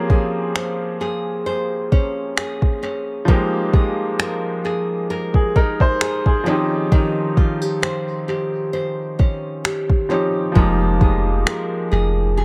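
A soft-kicked, tape-warm electronic R&B drum kit of finger snaps and kick sets a moody, longing contemporary R&B groove at 66 BPM in F minor, with a lightly swung 16th feel, while a clear, slightly boxy baby grand piano accompanies and a full-bodied, fingerpicked nylon-string guitar with audible finger squeak spins arpeggios through Bbm9, Fm11 and Eb13, all three soaked in dub echo within a small, lightly reverberant room. Then a deep, mellow, sine-like 808-style bass lands on a long, decaying F at 10.6 seconds near the close of this 12.4-second fragment of a longer piece.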